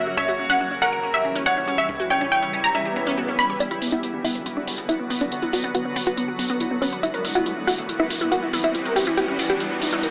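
A lush, detuned unison pluck carries the delay-echoed melody in this soaring, driving uplifting trance excerpt at 140 BPM in B harmonic minor, joined by a bright, wave-folded pluck playing phased, filter-swept arpeggios, a clear grand piano second line with audible action noise, and a punchy sequencer bass in the background until 3.6 s, while a swell and riser enter at 2.9 s and an up-front electronic hi-hat drives the build-up from 3.6 s, the mix sitting in a moderate concert hall reverb with a thin, AM-radio tone.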